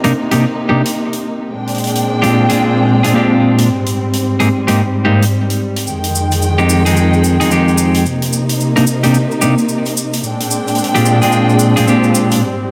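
Funky and gritty, this glitch hop excerpt at 110 BPM swings its 16ths as a dark, lush bowed string section carries sustained chords with vintage 12-bit sampler grit beside bright, twangy clean electric guitar stabs through digital delay, a natural big-room acoustic hi-hat, and a very quiet electronic downlifter over the first 1.5 seconds, while a grainy, mellow cabasa joins at 5.9 seconds, all in a lush hall reverb over chords moving from Cm7 through Bb13, Abmaj7 and Fm9 before a break at 12.4 seconds.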